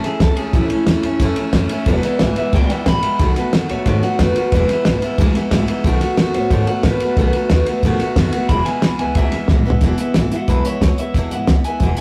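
This rowdy, upbeat rockabilly excerpt opens with the full band at once: a twangy, slightly broken-up electric guitar carrying the melody through a small old amp with spring reverb, a full-bodied picked dreadnought acoustic guitar sitting up front, a growly pizzicato upright bass, and a cloth-damped, thuddy drum kit. The tempo is a brisk 181 BPM in a straight 4/4, set in E major, with the harmony moving from A to E and alternating between B7 and E. The drums sit up front with a dry, dark character: a fat snare, tight kick, dusky cymbals and a rolled-off top across hi-hat, ride and toms. Underneath, the bass has a woody, thumpy tone on steel strings. A drum fill at 9.5 seconds leads into a new section at 9.8 seconds. The whole take has the rough feel of a rehearsal room, with warm saturation and a moderate studio reverb, and it is clearly cut from a longer piece.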